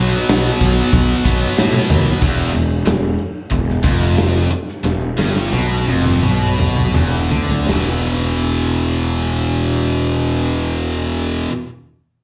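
Heavy and driving, this short hard rock clip, cut from a longer piece, moves in 4/4 at a straight feel between 79 and 94 BPM and slows down from 2.2 to 7.7 seconds. Two distorted electric guitars play riffs throughout: a bright, high-gain guitar sits up front, while a tighter picked guitar stays in the background, both carrying a slapback echo. A fuzz-toned picked bass, overdriven and growly, sits up front beneath them. A big acoustic drum kit with a dark, smooth sound, a medium-tuned snare and a punchy kick enters at 0.3 seconds, working crash, hi-hat and toms, and plays fills from 1.6 to 2.2 seconds and again from 4.8 to 7.7 seconds before dropping out at 7.9 seconds. The harmony moves from B5 to E minor and settles on E5, and the whole thing sounds like a live club gig heard through the venue's PA, with light room reverb.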